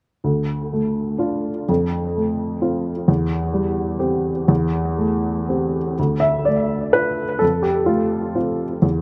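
Close, detailed microphones and a light reverb frame a woody, slightly detuned upright piano, its short-sustained notes sitting up front with a touch of tape echo. This melancholic, reflective fragment of neoclassical minimalist piano moves in a rubato 3/4 at 116-131 BPM, in D dorian and tuned to A4 = 438 Hz. The solo piano spans D2 to E5 from 0.2 s, moving through Dm, F, C/E and Am7/E before a new section at 6.0 s returns to Dm and F until the cut at 9.0 s.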